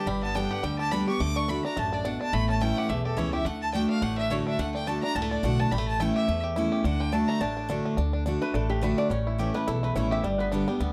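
A swung 212 BPM bluegrass groove in D major sets a rustic, virtuosic mood, as a clear, earthy bowed fiddle with light vibrato takes the lead over bright, full-bodied picked acoustic guitar with finger squeak, twangy, percussive fingerpicked banjo arpeggios and thumpy, woody pizzicato upright bass, before a metallic, nasal lap resonator guitar played with a steel bar takes a brief solo from 8.0 seconds in this short cut from a longer piece set in a moderate studio reverb.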